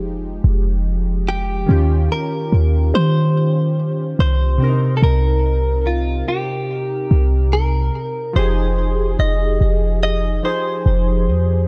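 Tender and romantic, this short cut from a longer contemporary R&B piece moves at an unhurried pace with a gentle swing on the sixteenths. Detuned analog keys with a round, sawtooth character supply the chords from the start, colored by chorus, phaser and a filter sweep, and passing through Fm9, Eb9 and Cm7 before returning to Fm9 at 8.4 seconds as a new section begins. Underneath, a clean 808-style bass sits up front with a deep, boomy sine tone that strikes quickly and decays. At 1.3 seconds a direct-recorded clean electric guitar takes the melody, its picked, compressed notes bathed in lush chorus and delay. The dark production wraps the parts in digital ambience, with the mellow bass standing out above the softer keys and guitar.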